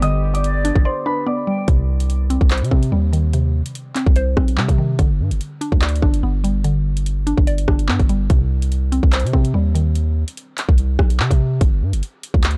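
A drill drum kit sits up front with a hard-clipped kick, metallic hi-hats, handclaps and rim clicks, all roughened by vintage 12-bit sampler grit, in this menacing, ominous hip hop cut from a longer piece at 145 BPM in a half-time feel. A long, sine-toned 808-style bass rides just as far forward with a fast attack and deep decaying notes, moving through C harmonic minor over G and C minor chords. In the opening moments, a dark, mellow concert grand piano carries the melody through a low-pass filter and digital delay, while a warbly, nostalgic tape-like pad with detuned sawtooth and triangle tones hums lo-fi chords in the background, and a distant, airy concert flute with vibrato enters at 0.4 seconds as a second line. The piano, pad and flute all fall away by 1.7 seconds, after a short break, while a woody, round FM synth pluck with chorus, present from the very start, carries the accompaniment until 10.0 seconds. 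The dark, warm production keeps the sound dry and close, closing on a bare G5 chord.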